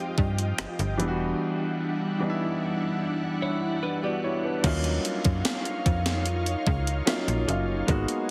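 This short excerpt of slow, sensual contemporary R&B opens on a warm grand piano and an ethereal, airy pad whose detuned, warbling sustained chords carry an ensemble chorus and built-in reverb, moving from Fm9 to Em9 in the first second. Just after, a gated 80s digital drum machine arrives up front with a thumpy kick, a gated-reverb snare, finger snaps, rim clicks, hi-hat and crash, its tape-tinged, sampler-style sound re-recorded in a small room. Alongside it, a slap-like FM bass adds a snappy, metallic attack that then decays in the low register. From 3.4 to 4.6 seconds, a clean, picked semi-hollow electric guitar plays brief arpeggios through a digital delay before the harmony settles on Ebm9 for the closing stretch. The whole mix sits in light reverb with a heavily compressed, radio-style finish, giving the longing mood a polished, late-night glow.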